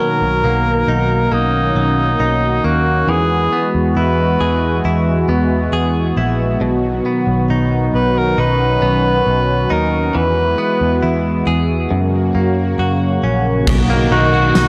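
An up-front cor anglais with light vibrato and a soft attack sings the melody through an analog delay, over a smooth, detuned sawtooth pad in chorus and twangy, compressed arpeggios from a clean, direct-recorded electric guitar, with a round, dark, foam-muted picked bass entering at 0.2 seconds. This ethereal, dreamy dream pop excerpt moves at a slow 68 BPM in B major, drifting through Bmaj7, Eadd9, B and F# in a small room ambience with transformer saturation. At 13.7 seconds a huge arena drum kit arrives with bright cymbals, a fat snare, a punchy kick and tambourine in a pumping hall as the harmony returns to Bmaj7.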